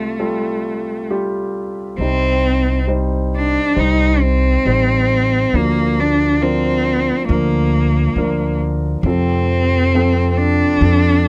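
Heartfelt and intimate, this folk fragment places a rich, bowed solo cello up front, its smooth, even vibrato carrying the melody over the warm accompaniment of a concert grand piano with deep bass. From 2.0 seconds, an acoustic upright bass joins with woody, dark pizzicato on steel strings. The dry, close sound of a 1970s-style studio recording adds only light reverb.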